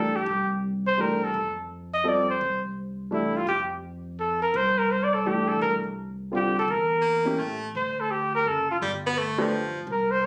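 Captured on a phone in a club-like room with light reverb and compression, this playful, sophisticated fragment of small-group swing and bop in 3/4 features a vibrato-laden trumpet with a smooth top carrying the melody in scooped notes, over an intimate, vintage-toned grand piano with audible action noise and a woody, dark pizzicato upright bass, while an edgy, punchy baritone saxophone enters at 7.0 seconds with a forceful second line.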